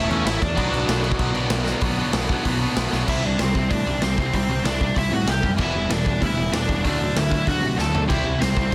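A dense, heavily limited modern master with little reverb gives this short punk rock cut, taken from a longer piece, an urgent, angry push at 191 BPM in a straight 4/4. Up front, a raw garage drum kit in a bright stone room hits with a punchy kick, a medium-tuned snare, crash, hi-hat and toms, its saturated, gritty sound pumping with the room, and fills land at 1.7 and 2.9 seconds and again near the close. A growling picked electric bass, direct and amped with overdrive, drives the low end beneath three bright distorted guitars playing riffs in the background, one of them double-tracked and very quiet, another tight and distorted. A smooth overdriven lead guitar sits forward with a warm, picked melody, briefly sounding at the start, then returning at 3.1 seconds to carry the rest. The chords move from A to Bm, then shift through C, Em and D before settling back on C.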